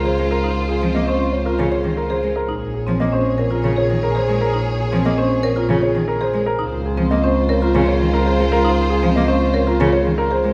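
Woody, bright marimba arpeggios ring out from just after the start of this hypnotic, minimalist classical pattern piece, cut from a longer work, while a polished grand piano carries the melody with short sustain. A chamber violin section holds sustained chords with vibrato and a smooth top, a single bowed cello adds accompaniment, and a bowed double bass gives an even low foundation. The ensemble sits in the reverberant space of a church or concert hall, moving from Bbm9/Db to Bbm7 at 2.5 seconds and to Dbmaj13 at 6.6 seconds.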